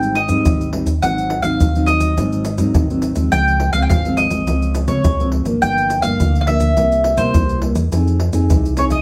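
Nostalgic and bittersweet, this short cut from a longer samba and choro piece moves in a straight 4/4 feel. A picked mandolin carries the melody up front, its double strings giving a round, warm tone. A small-sounding nylon-string guitar, thumb-plucked with fresh strings, supplies warm accompaniment beneath it, while a dark, amped hollow-body short-scale electric bass, played with the fingers, anchors the low end. Maracas, pandeiro and a tight surdo sit close and dry in the mix, played with soft hands. The harmony drifts from Abmaj7 through Ab7 and Dbmaj7 to Gm7, C7 and Fm7 across the 9 seconds, all set in a moderate studio reverb and heard from further back in the room.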